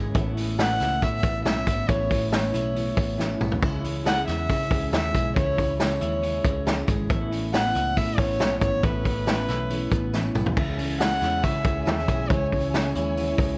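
Restless and wistful, this jangly indie pop fragment sets a fingerpicked, full-bodied acoustic guitar and a bright, twangy twelve-string electric playing arpeggios in the background over a dark, round muted bass and an up-front vintage drum kit with a punchy kick and dark cymbals, with fills at 3.2 and 10.1 seconds and a jingly tambourine tucked very quietly behind. An airy, floating solo violin carries the melody through tape echo and plate reverb from 0.6 seconds, and a lush, smooth-topped string section adds sustained chords from 10.6 seconds as the harmony moves between Aadd9 and C#m. The whole piece sits in a moderate studio room on worn, warbling cassette tape with a drifting pitch.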